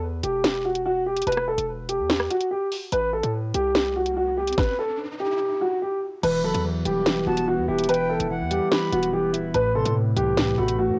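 The recording has a lo-fi, home-taped character with light reverb, and it is a short cut from a longer dark, menacing drill track at 145 BPM in a half-time 4/4 feel, in E minor. A punchy, saturated 808-style bass with a sine body and noise layer anchors the low end from the start, while a boxy, dark concert grand piano carries the melody up front, its long sustain colored by cassette tape. The electronic drill kit, also tape-treated, brings a knocking kick, sharp snare, rim clicks, crash and warm hi-hats. Between 3.9 and 5.4 seconds an electronic riser leads into a second passage at 6.2 seconds, where the chords shift from Em and Am to Emadd9 and Amadd9. There a clean, compressed electric guitar with spring reverb joins as accompaniment alongside very quiet, glassy sustained chords from a glass harmonica with audible beating, and a breathy, close-miked silver flute adds an expressive second line with analog delay.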